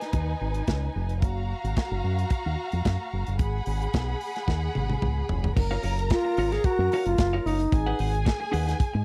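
A straight, driving disco groove from a punchy, up-front drum kit and a fingered electric bass through an envelope filter carries this glamorous excerpt, with a lush, distant bowed violin section singing behind them, a drum fill at 4.5 seconds, bright, twangy clean electric guitar joining at 5.6 seconds, and a breathy alto flute with a crisp attack, vibrato and slapback echo taking the melody at 6.1 seconds, all in a dry, close 1970s-style studio sound.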